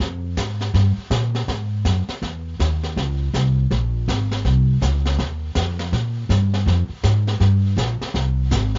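Moody and cool, this short excerpt, cut from a longer piece, finds a jazz piano trio swinging its eighth notes at a brisk 162 BPM in 4/4, in F minor. Across all 8.8 seconds, only the upright bass and the drum kit are heard. The pizzicato upright bass sits up front, its steel strings giving a woody, dark, thumpy tone as it moves between Ab1 and Bb2. Further back, the jazz brush drum kit plays brushed snare, hi-hat, kick and snare, with a high-tuned snare and a boomy kick, its sound colored by cassette tape. The home cassette recording is dry, with little reverb and a dull top end that tops out at 7.5 kHz.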